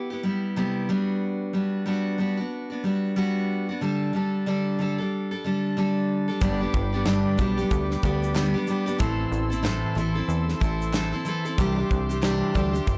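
Acoustic pop with a carefree, heartfelt mood, this cut from a longer piece moves at 93 BPM in 4/4 with a swung sixteenth-note feel in G major. A picked steel-string acoustic guitar opens alone, full-bodied and up front, carrying the accompaniment through chords of Cmaj7, Gmaj7 and Dsus4. At 6.4 seconds the band arrives: a punchy, funky analog bass with a plucky, fast attack and a decaying tone, an acoustic studio drum kit with tight kick, medium-tuned snare and shaker in a small room, and a smooth, clean tonewheel organ holding sustained chords high above with chorus vibrato. A barely audible group handclap, crisp and human, sits in the background from 7.1 to 12.4 seconds as the harmony moves through G, Am and Cadd9. The recording has light reverb but is blown-out and overdriven, giving the material a gritty, saturated edge.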